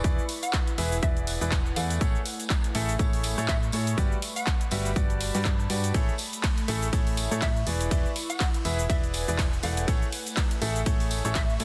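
Piano house with an uplifting, joyful swing, built on a clear, intimate grand piano riff with audible action noise, tape echo and sidechain pumping, over a punchy, round FM bass that pumps as well, while an overdriven, up-front electronic kick and a layered house kit of cabasa, handclaps, hi-hat and ride cymbal drive it along, a saturated tambourine sits in the background, an airy, breathy pad with chorus breathes beneath, and from 0.4 s a hollow, bouncy square-wave pluck with cassette-tape colour adds a melody, all in a dense, heavily limited mix with little reverb.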